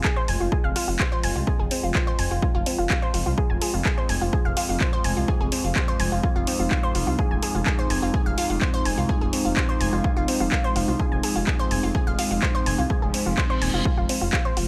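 Melodic techno at 126 BPM in F minor, hypnotic and dark, built on a tape-warm punchy kick and analog drum machine handclaps and hi-hats, with a menacing detuned saw bass that swells through its filter from 0.3 seconds, round chorused analog pluck arpeggios trailing dub echo, a deep, moody pad of sustained ring-modulated chords, a resonant background drone with moving overtones on F2, and sidechain pumping across pad, pluck, drone, bass and hats, while a reverse cymbal sounds at 13.2 seconds in this hovering Fm passage cut from a longer piece.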